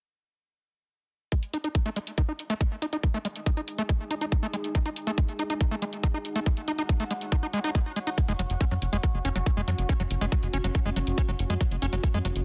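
A dense, heavily limited and dry modern master carries this intense, psychedelic trance excerpt at 140 BPM, where a squelchy, gritty acid bass riff with distortion, delay, sidechain pumping and a resonant filter sweep enters at 1.3 s alongside a tight, up-front electronic kick and a layered electronic hi-hat, a deep, moody, detuned pad with chorus and built-in reverb comes in at 3.3 s, and a punchy, driving sequencer bass joins at 8.3 s.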